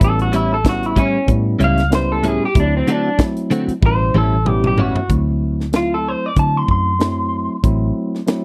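Gritty and swaggering, this short slice of straight-eighth soul blues in D mixolydian struts at 94 BPM with a light sixteenth-note swing, as a slightly broken-up, lo-fi electric guitar through a small old amp carries the melody over a tine electric piano heard through its built-in speakers, a dark, foam-muted fingered bass, a tight funk kit with a high-tuned snare and a drum fill from 3.8 to 5.1 seconds, and bright, direct-recorded clean guitar stabs with ensemble chorus from 0.3 to 5.0 seconds, all captured as a dry, close 1970s-style studio recording.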